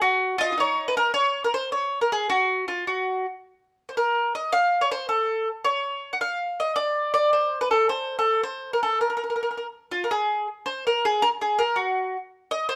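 A moderate studio reverb gives this short cut from a longer piece the feel of a live performance in a single room, with the mandolin sitting up front. It is Italian folk in 6/8, moving at 107 beats per minute counted in dotted quarters with a straight feel, in B-flat minor and tuned to A4 = 444 Hz. The acoustic mandolin is the only part, playing solo from 0.0 to 12.8 seconds, its picked double strings giving a warm, woody tone. Its line ranges from Eb4 up to Gb5 and passes through a brief opening, a longer middle stretch, and a closing passage that begins at 10.1 seconds. The mood is romantic and wistful.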